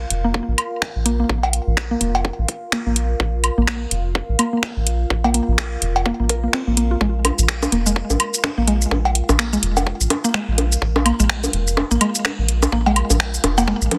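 A rubbery, hollow square bass and a warbling, nostalgic lo-fi pad with chorus and built-in reverb open this cool, hypnotic minimal techno cut at 126 BPM, both breathing with sidechain pumping under a swung 16th-note feel. A house drum kit of finger snaps, metallic hi-hats and shaker, a punchy electronic kick, and up-front woodblock, cowbell and bongos arrive within the first 0.6 seconds, while a woody, round mallet-like FM pluck riff with chorus and delay weaves through. The whole 14-second stretch acts as a build-up with a filter sweep on the synth arpeggio, set in light digital ambience and a dense, heavily limited master.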